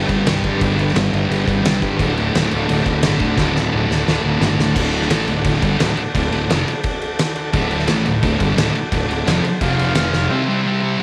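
A thick, picked and double-tracked fuzz guitar riff drives this raw, rowdy garage rock excerpt at 173 BPM in D mixolydian from the first moment, together with a growly overdriven fingered bass and buzzy vintage combo organ chords bathed in spring reverb in the background, while an oversized low-tuned drum kit with a fat snare, punchy kick and dark cymbals sits up front in a bright, pumping stone room and plays a fill from 3.4 to 4.8 seconds as the music moves into a new section.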